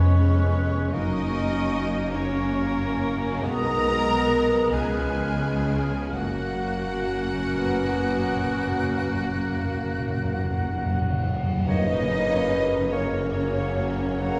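Tender and serene, this rubato romantic orchestral passage, cut from a longer piece, carries a lush, distant violin melody over airy flutes, a close-miked oboe, an intense second violin line, a dark clarinet, violas and bassoon, with warm French horn chords and smooth cellos and double basses beneath, round soft-mallet timpani from 0.9 s, a very quiet cymbal swell and tam-tam from 6.1 s, and trombone chords joining at 11.7 s, heard in a reverberant recital hall.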